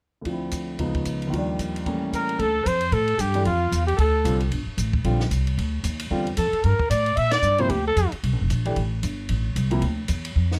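A short cut from a longer small-group swing and bop jazz performance, this piece has a cool, swinging mood and a brisk swing feel. A concert grand piano with deep bass and audible action noise opens the piece alongside a compact cocktail drum kit, whose dark cymbals, high-tuned snare and punchy kick sound dry and natural. The mellow trumpet takes the melody from 2.2 seconds, up front with scooped notes, a smooth top and a forceful edge. Very quietly beneath it, the alto saxophone plays a second line with vibrato and a vintage subtone, while the pizzicato upright bass enters at 2.4 seconds, woody and up front with steel strings. The band hits an accent at 7.3 seconds, and the recording is close and detailed with light reverb, leaving the bass and drums to carry on after the piano stops.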